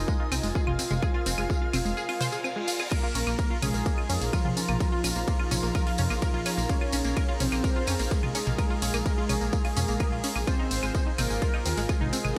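This melancholic, dramatic melodic techno excerpt at 127 BPM opens with a round, brassy synth melody, an airy lead with tape character and vibrato above it, a menacing detuned saw bass with a filter swell, a breathy background pad and a biting, earthy string section holding chords, each pumping to the sidechain. A punchy, overdriven, up-front kick, a house kit of hi-hat, claves, ride, crash and toms, a jingly vintage tambourine and a tight, phased arpeggio sequence arrive almost at once, and a reverse cymbal sounds at 2.4 seconds. The harmony moves from Fm to Bbm at 2.9 seconds and to Ab6 at 10.5 seconds, all set in light reverb with a bright 1980s-style digital sheen.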